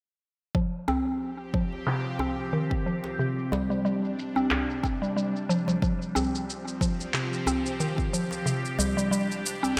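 Hypnotic and earthy, this organic downtempo excerpt moves at 91 BPM in 4/4 with a light swing on the sixteenths, cut from a longer piece. A woody, round mallet-like synth pluck sits up front from 0.5 seconds, spinning arpeggios between C3 and C4 with a warbling vintage FM character, fast-attack decaying notes, chorus and digital delay. Beneath it, a bowed-like drone enters at 1.2 seconds with tense, string-like sawtooth chords that swell in slowly, carrying vibrato, a phaser, built-in reverb and sidechain pumping. The rhythm rests on a deep, tape-colored electronic kick drum that stops at 8.1 seconds, joined by layered electronic shaker and handclaps under low-pass filtering, gated reverb and a filter sweep, plus a tight, cracking djembe played with hard hands in a small room. The harmony moves from F5 to Csus2, back to F5 and then G5, all bathed in a wet plate reverb and a bright 1980s-style digital production.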